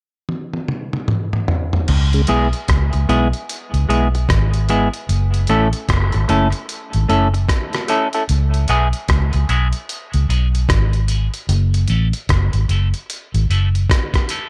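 A gritty, compressed sampler-style drum kit opens this short dub reggae excerpt with a fill from 0.3 seconds, its thumpy kick, toms, rim click, hi-hat and crash sounding as if re-recorded in a large room. At 1.9 seconds a dark, foam-muted fingered electric bass enters up front, round and punchy in its low register, as the harmony settles on C#m7 and then moves between C#m7 and F#m7. A mellow tonewheel organ with key click and a slow rotary speaker flickers in only briefly around 2.1 seconds, trailed by dub echo. A clean, hollow-body electric guitar follows at 2.3 seconds, high-pass filtered and treated with dub echo, and from 5.1 seconds a filter sweep colours its part through to the end. At 75 BPM with a swung sixteenth-note feel in C# minor, the music stays deep and hypnotic under a light reverb.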